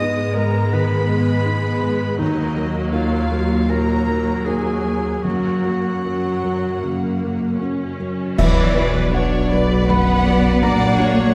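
A sorrowful, longing cinematic film score opens with a felt-muted upright piano, its thick felt and audible action noise sounding intimate beneath a bright, soft-attacked clarinet, lush violins, intense violas and focused cellos, all set back in a wet scoring-stage reverb at a rubato 79 BPM, before dark cymbals and concert bass drum enter at 5.2 seconds and the violins take up the melody over distant double basses with a band accent at 8.4 seconds as the harmony moves from G#m through D#m and F# to Bm.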